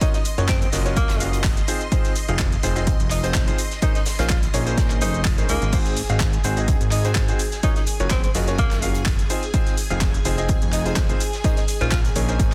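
Feel-good and euphoric, this piano house excerpt is built on a bright grand piano riff with 12-bit sampler grit, dub echo and sidechain pumping, over a punchy, up-front electronic kick and a fat, detuned sawtooth bass that enters at 0.4 s. Shimmering vintage string-machine violins hold pumping chords in the background under ensemble chorus, while a warm tenor saxophone with vibrato plays a jazz-style solo melody through dub echo until 12.0 s. A garage kit adds crisp hi-hat, shaker, handclaps and crash cymbal, and a very quiet acoustic arena kit contributes hi-hat and snare, with a small room ambience and a dense, heavily limited master.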